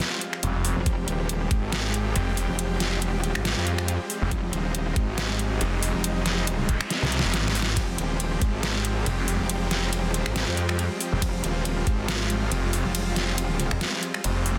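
Huge bright supersaw chords pumping against the sidechain and a deep-snared kit with metallic hats, snaps and ride open this chaotic, menacing heavy wobble dubstep piece in F minor at 139 BPM. A snarling, detuned saw bass growls up front from 0.4 seconds, joined by a metallic, chorused wobble bass from 0.8 seconds, a knocking electronic kick that drops in and out, and a faint noise sweep under a drum fill at 6.9 seconds, all within a dense, heavily limited modern master with light digital reverb.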